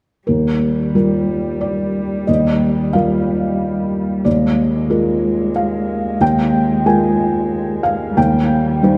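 Neoclassical piano and strings in Eb major, tender and intimate, drifting in rubato 3/4 around 91 BPM, where an up-front felt-muted upright piano with a soft, mellow, thick-felt tone and audible action noise carries the accompaniment through Ebadd9, Bb7/Eb and Cm/Eb, while a single con sordino cello, veiled and dark with light vibrato, bows a quieter second line from 0.3 to 9.0 seconds, both set in a vast, echoing cathedral reverb.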